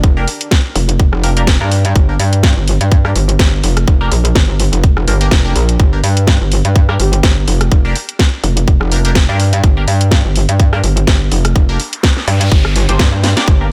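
Gritty and bouncy, this bass house excerpt in G minor runs at 125 BPM in 4/4 with a 55% swing on the sixteenths, resting on a G minor chord throughout. Up front, a metallic, aggressive wobble bass spanning F1 to G2 carries an FM tone that is compressed and thickened with chorus and tube saturation, pumping through sidechain. A tight, layered electronic kick, re-recorded in a small room, sits beside a garage drum kit of cracking snare, rim clicks and bright hi-hats. A nasal, band-passed chord stab from Bb3 to D5 adds detuned sawtooth color through phaser, digital delay and its own sidechain pumping, while a breathy, flute-like lead with vibrato surfaces in the background on a single G4 at 7.0 seconds. A noise sweep enters at 11.9 seconds and a drum fill lands at 13.2 seconds, and the mix stays close and dry with little reverb.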